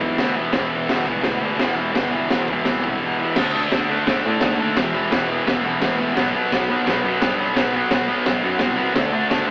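An AM-radio sound wraps this short cut from a longer piece, with the band playing live together in a stone room that adds a moderate, one-second reverb. It's gritty, swaggering garage rock in E minor, driving along at 171 BPM in a straight 4/4. Up front, a thick, bright fuzz guitar, double-tracked and distorted, picks out the riff across the whole clip, moving from an E minor chord to power chords on D, E and B after 3.4 seconds. The raw acoustic drum kit sits just as close, its punchy kick, high-tuned snare and crash cymbal saturated and rolled off at the top, pumping in a small room. Beneath them, the picked electric bass growls in the background, overdriven and fuzzy with a warm, amped edge.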